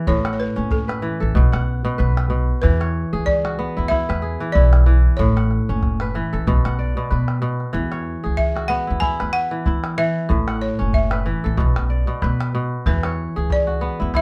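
A buzzing, woody balafon melody and crisp, ringing fingerpicked kora arpeggios open this joyful, flowing West African string and xylophone piece at 94 BPM in 4/4, with a gentle swing on the sixteenths. From 0.1 seconds a thumpy gut-string upright bass, played pizzicato, and a deep, vintage-toned calabash join in, with the bass sitting a little louder than the other parts. The kora sits up front and the balafon is close and full, all within a small, moderately reverberant room as the harmony cycles through A, B and E chords, touching on B minor, in this short cut from a longer piece.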